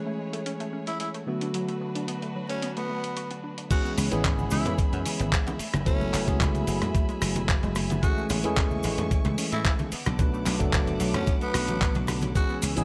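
A straight 4/4 groove at 111 BPM drives this sunny, feel-good nu-disco excerpt. A gritty, tape-warm sampler-style soul kit of hi-hat, handclaps, rim click, cabasa and crash sits under a clean tine electric piano with sidechain pumping and digital delay, lush bowed strings, a faint detuned analog pluck playing arpeggios, and a raspy, growling tenor saxophone melody with tape echo. At 3.7 seconds the drop arrives with a thumpy, up-front electronic kick and ringing background cabasa and congas, joined at 4.0 seconds by a punchy, foam-muted thumbed slap bass, while the chords move from Amaj7 and Bm7 through C#m7 and F#m11 under light reverb.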